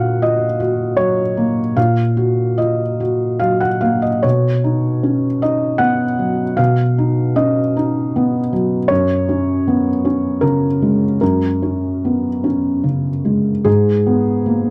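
A felt-muted upright piano carries this short, solo excerpt of neoclassical minimalist piano music, its tone soft, mellow and thick with felt, placed up front so it feels intimate. The mood is melancholic and close, set in Eb minor in 3/4 at roughly 71-81 BPM, played rubato so the pulse breathes freely. The piano spans Gb2 to Gb5 and moves through a slow progression from Ebm/Bb to Badd9 at 4.2 seconds, then Gbadd9 at 8.9 seconds, reaching Abmadd9 at 13.7 seconds just before the clip ends at 14.7 seconds. The sound is dry and close, in the manner of a 1970s studio recording, with only a light touch of reverb around the piano.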